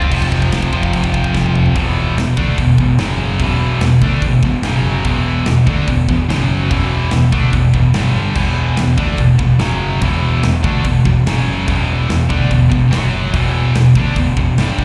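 Dark and epic, this heavy metal excerpt drives at 145 BPM in a straight 4/4, led by a scooped, high-gain, double-tracked guitar riff that sits up front, its distortion carrying a slapback echo. A growling picked bass with overdrive and a tight, polished drum kit with bright cymbals fill out the band, and a drum fill at 1.3 seconds leads from an opening F5 chord into a long stretch centred on E5, with brief moves to F#5 and one to G5 at 8.0 seconds. It sounds like a live gig heard through the venue's PA, with light recital-hall reverb giving the kit an airy, big-room feel.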